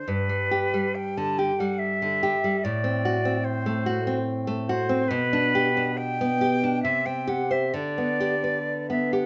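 Swaying in a rubato three-beat lilt, this tender, romantic duo for flute and classical guitar unfolds as a short passage taken from a longer piece. The silver concert flute carries the melody with an airy, vibrato-laden tone and soft attack, bathed in plate reverb, while the nylon-string guitar accompanies with deep, fingerpicked warmth, a finger squeak audible. Both sit up front in a reverberant studio space, moving through a gentle progression from G through F#dim/A and G/B to C5 before settling on G/D.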